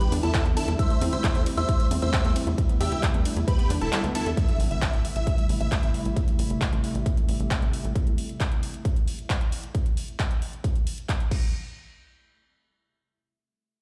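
Uplifting trance at 134 BPM in A minor, driving and soaring, cut from a longer piece and opening in the middle of a drop over Em7 and C6 chords before settling on Am7 at 4.4 seconds. A huge, euphoric supersaw lead carries the melody with a cassette-tape colour, sidechain pumping and delay, while a catchy, plucky unison lead sits higher in the background with its own delay, both pumping against the kick. Underneath, a lush, detuned unison pluck runs arpeggios, a shimmering, ethereal pad holds sustained chords through chorus and reverb, and a tight, nasal sequencer bass drives the low end. A punchy, up-front electronic kick anchors a big-room dance kit of crash, ride, handclaps and metallic hats, and the kick drops out briefly just before 4.4 seconds. There a very quiet electronic impact lands as a filter sweep moves across the pad, and the pad and bass stop around 7.9 seconds, leaving the drums to carry on in a large, reverberant room sound.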